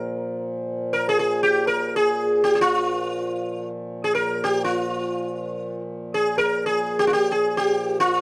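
A dry, close studio sound in the 1970s manner frames this solemn, meditative Hindustani classical fragment in free time, where a bright, buzzing, plectrum-plucked sitar with shimmering sympathetic strings sits up front over a reedy, mellow, breathing pedal harmonium drone of vintage, band-limited character that rests lower in the mix for the full 8.2 seconds.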